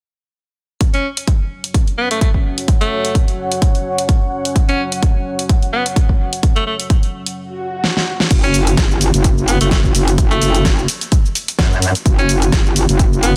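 A dense, heavily limited modern mix with digital ambience carries this swaggering, gritty bass house excerpt in F# phrygian at 128 BPM, where a punchy, tape-warm electronic kick and a big-room kit with a huge snare, crash, hi-hat and shaker back an edgy, forceful alto saxophone melody with scooped notes and delay, while a deep, moody detuned pad with chorus and sidechain pumping sustains chords from 2.0 to 7.3 seconds before an electronic swell at 7.5 seconds and a drum fill lead into a metallic, saturated FM wobble bass that arrives up front at 8.3 seconds.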